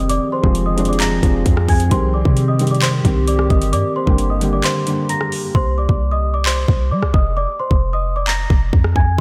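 Soaked in lush hall reverb, this dark, melancholic half-time trap excerpt pairs a delicate, bell-like celesta melody carrying analog delay with a soft felt-muted upright piano and a detuned, nostalgic tape-like pad that warbles with chorus until about 5.5 s, all over a deep, boomy 808-style bass and an up-front trap kit of hard-clipped kick, metallic hi-hats, handclaps and rim clicks, whose kick drops out between 4.6 and 5.5 s and whose hats fall silent from 5.5 s to the end.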